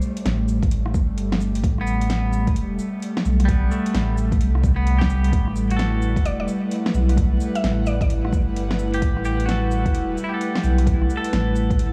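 A breathy, detuned pad pumping under sidechain opens this wistful, rainy future garage excerpt at 130 BPM alongside a woody mallet-like synth pluck with tape echo, which returns at 6.3 s, and a deep house kit of cabasa, metallic hats, rim click and fat snare in a swung 16th feel; a round sine sub bass with tube saturation and a deep electronic kick follow almost at once, a bright, twangy clean electric guitar with analog delay enters at 1.8 s, and the harmony moves from Am7 to Emadd9 amid vinyl crackle and studio reverb.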